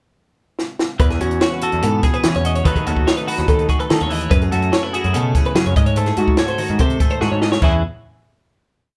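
A short drum fill on a compact cocktail kit opens this brief, intricate and playful math rock and midwest emo piece at 145 BPM in E major, before two bright, clean twelve-string electric guitars and a round, overdriven picked bass enter together at 1.0 seconds. One guitar repeats a twangy ostinato, the other spins a rolling fingerstyle arpeggio, and the bass drives a syncopated riff through chords like E69, B7/D#, F#m11 and G#7b9, while the dry, up-front drums play a funk groove with a high-tuned snare, punchy kick and dark cymbals. After a second fill at 7.2 seconds, the band lands on a final E6 chord in a close, live-room sound.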